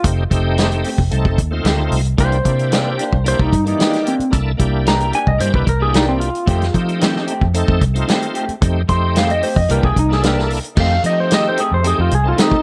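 A twangy, compressed lap steel guitar sings the melody from the first beat in this rollicking, swaggering soul blues, sliding with volume swells over a shouting tonewheel organ that is lightly overdriven and churned by a slow rotary speaker and chorus vibrato. Underneath, a foam-muted fingered electric bass sits up front with a round, punchy, dark tone, while an acoustic soul drum kit with a punchy kick, medium-tuned snare, hi-hat and crash drives a straight 4/4 groove at 112 BPM with a mid-forward, rolled-off top. From 0.6 seconds a picked electric guitar through a small old amp adds slightly broken-up stabs. The harmony moves between F9 and C9 in F mixolydian. At 10.8 seconds an electric slide guitar solo begins, and a very quiet jazz-style horn section briefly adds smooth, octave-doubled sustained chords with light vibrato until 11.8 seconds. The lap steel, organ and stab guitar carry plate reverb within a tight, lightly reverberant room, and faint lossy compression artefacts colour this loud excerpt cut from a longer piece.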